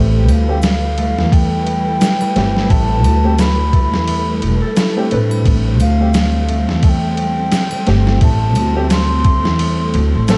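A growly, woody pizzicato upright bass sits up front in this dark, hypnotic trip hop excerpt at 87 BPM in A minor, set on an Am7 chord beneath gritty, pitched-down boom bap sampler drums with a thumpy kick, snare and ride, a hollow, airy wooden flute melody touched by 12-bit grit and tape echo, a mellow upright piano with tremolo and tape echo, ringing thumb-plucked harp arpeggios through digital delay, bowed string chords with vibrato and portamento, and a faint triangle and egg shaker, over a bed of vinyl crackle.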